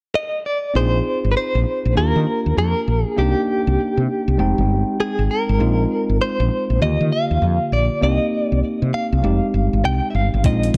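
A bright, compressed clean electric guitar carries the melody from 0.2 s in this bouncy, confident new jack swing excerpt, its picked, scooped tone sitting up front with tremolo and delay. A tine electric piano supplies the chords beneath it, sounding clean as if heard through its own built-in speakers. From 0.8 s a woody fretless bass sits prominently in the mix, dark and round with a hollow-body character and a touch of tube saturation. The harmony circles through Bb9sus4, Ebmaj9, Cm7 and Fm9 twice over a swung sixteenth-note feel, giving the R&B groove a lush, jazzy colour. Only at 10.4 s does a 12-bit drum machine enter with an overdriven, thumpy kick and hi-hat, its sampler-style sound re-recorded in a large room. The production is dark with light reverb, and the passage is cut from a longer piece.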